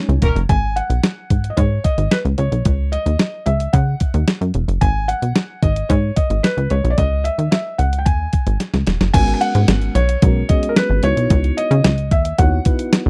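A punchy, up-front analog bass with a sawtooth bite and a quick filter pluck drives this slick, danceable slice of early-eighties boogie funk in G# minor at 111 BPM, set against a crisp 8-bit drum machine whose thumpy kick, medium-tuned snare, hi-hat and crash carry a tape-warm, small-room character. A soft, felt-muted upright piano sings an intimate, mellow melody over chords moving from G#7 to C#sus4 and D#7sus4. After a drum fill leading into 9.1 s, a full-bodied, warbling FM electric piano with a dark tone returns for a richer passage on G#m11 and C#m11, all in a dry, close 1970s-style studio sound.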